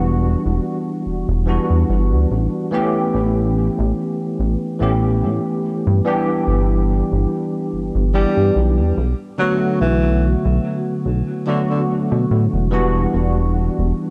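A lightly swung 4/4 groove carries this dreamy, woozy vaporwave excerpt, where a bell-like tine electric piano coated in ensemble chorus, vintage 12-bit sampler grit and tape echo drifts through Em9, A9, G6 and Bm7 over a glossy, pulse-width-modulated synth bass with a filter pluck and fast attack, while a breathy, subtone tenor saxophone steps in from 8.1 to 11.8 seconds for a smooth jazz-style solo trailing tape echo, all set in a dark production with light reverb and studio ambience.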